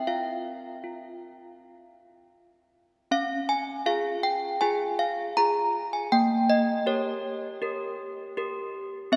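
Desk bells play a solemn, wintry classical tune for handbells alone at 80 BPM in 4/4, their clear, clanky and slightly out-of-tune tone sitting up front in a wet church reverb, as the short cut from a longer piece moves from a chordless opening to Db at 3.1 seconds and Gdim/Bb at 6.1 seconds.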